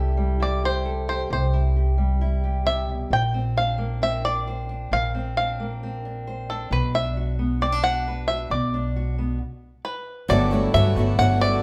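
Moderate, large studio reverb around a band playing live in one room frames this uplifting, nostalgic indie folk excerpt in 4/4, where a twangy, percussive bluegrass banjo leads up front over a fingerpicked steel-string acoustic guitar and a woody, dark pizzicato upright bass, a stop arrives at 9.4 seconds, and from 10.3 seconds the arrangement builds as a ringing, crisp kora, a bright, boxy swing-style picked acoustic guitar, a very quiet reedy, breathing pedal harmonium and a soft felt-muted upright piano with audible action noise join in.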